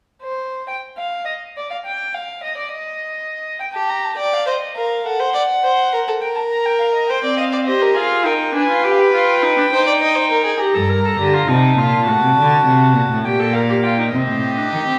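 Serious and driving, this baroque-style fugue for string quartet in C minor moves at 68 BPM in a straight 6/8, cut from a longer piece and heard in the wet reverb of a recital hall. A dark, nasal first violin carries the melody from the start, joined at 3.7 seconds by a second violin with light vibrato on the second line, then by the viola's accompaniment at 7.2 seconds, all in reedy gut-string period style. A close cello enters on the bass at 10.8 seconds as the harmony turns through G minor and D7 before settling on C minor.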